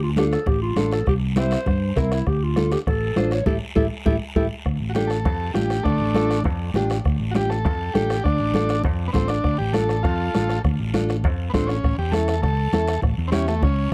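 A dark, lightly reverberant production frames this danceable, passionate cumbia excerpt at 201 BPM in D minor, where a gritty, growling clarinet with breathy vibrato and scooped notes takes a jazz-style solo over punchy fingered electric bass, full-bodied fingerpicked nylon-string guitar, soft-beater bombo, thin-skinned congas in the background and a raspy guiro. A band accent from 3.5 seconds closes the clarinet's turn, and at 4.7 seconds the key shifts to D harmonic minor; moments later a buzzy vintage combo organ with light vibrato and tape echo steps up front to carry the melody to the end at 13.9 seconds.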